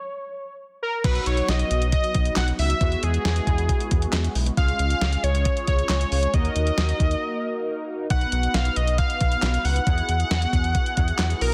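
Synth-pop with a melancholic, nocturnal mood, opening on a bold, warbling octave-doubled lead with chorus and delay alone for the first second, before a round analog bass, a clean 12-bit drum machine with thumpy kick, fat snare, hi-hat, handclaps and crash, and dark, evolving synth brass with chorus and phaser join at 1.0 seconds over chords moving from B through Eadd9, Db and Ebm, with a brief break at 7.2 seconds, all in light digital ambience and a dense, heavily limited master.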